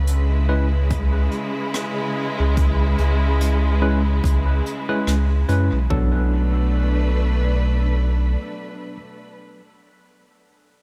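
A round, soft sub bass sits up front in this hazy, spacious ambient dub excerpt, with lightly swung 4/4 sixteenths, a veiled, con sordino string section bowing dark sustained chords, and a worn, slightly out-of-tune electric piano adding overdriven stabs soaked in dub echo. Brushed hi-hat and rim clicks, also echoed, blend with a punchy, overdriven electronic kick and toms tucked in the background. All of this sits in a small room ambience, with a C#m7 chord giving way to Bm7 at 5.9 seconds, just after the brushes fall away and shortly before the electronic kit drops out, and well before the bass stops at 8.4 seconds.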